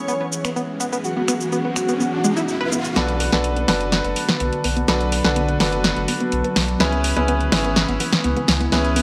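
Driving and expansive, this progressive house excerpt moves at 125 BPM in B dorian, opening with a bold, detuned unison lead and a soft, airy second line tucked behind tape echo over an evolving, bit-gritty wavetable pad, brilliant grand piano stabs with audible action noise, and a tight, chorused sawtooth arpeggio. Punchy snare, bright hats, snaps and shaker sit up front from 0.1 s while a background riser climbs from 0.8 s to 3.0 s, after which the leads fall away and a thick, saturated sub bass enters as a drum fill drives the build-up over Bm7 and then C#m7 chords. A moderate recital hall reverb gives the mix a roomy sheen.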